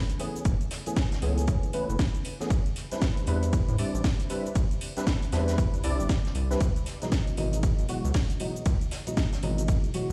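A swung sixteenth-note groove drives this moody, deep house cut, where a punchy, overdriven electronic kick and a round, dark analog bass sit up front from 0.5 seconds, a layered house kit adds a cracking snare, metallic hats, ride and shaker, a warm, natural vintage acoustic kit with a rolled-off top hovers in the background, and hollow, nasal organ stabs with chorus and tape echo pump over F#m11, Am11 and C#m11 chords, all re-recorded through a big system in a bare, reverberant room.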